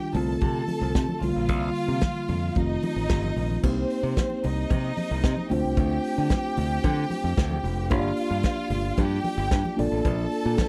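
This sultry, danceable disco cut in C dorian opens with a lush bowed violin section, a mellow tine electric piano and very quiet congas all sounding together from the start, with the drums and bass joining almost at once. The warm soul drum kit sits up front with a tight kick, a medium-tuned snare, hi-hat and crash cymbal, its roomy tone carrying a rolled-off top. Underneath, a modern fingered electric bass cuts through brightly and directly, while the clean electric piano supplies the accompaniment and the close, focused violins carry a second line with vibrato. The congas ring softly under the hands, and at 3.6 seconds a metallic, close and dry cowbell slips in, sitting in the background. At a straight 112 BPM in 4/4, the harmony moves from Dm7/C through Gm7 and F7 before settling into Cm7, Dm7, Gm7 and Bbmaj7, all captured with little reverb in this short piece lifted from a longer track.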